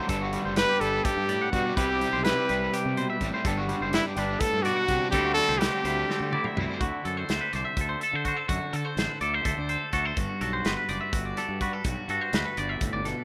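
A rough home-demo mix with light small-room reverb frames this intricate, wistful cut from a longer math rock and midwest emo piece in 7/8 at 250 BPM in G major, where a bright, compressed twangy guitar plays accompaniment through spring reverb while a second, fingered twangy guitar spins tape-echoed arpeggios, a double-tracked overdriven semi-hollow guitar carries a riff in the background with harmonic tremolo until 6.8 seconds, a dark, round fuzz bass and a loose, up-front indie kit with a tight kick and medium-tuned snare hold the odd metre, and a clear, punchy trumpet sings the melody with light vibrato from 0.6 to 6.6 seconds, overlapping a drum fill from 6.1 seconds that opens onto D9 and Gmaj9 harmonies.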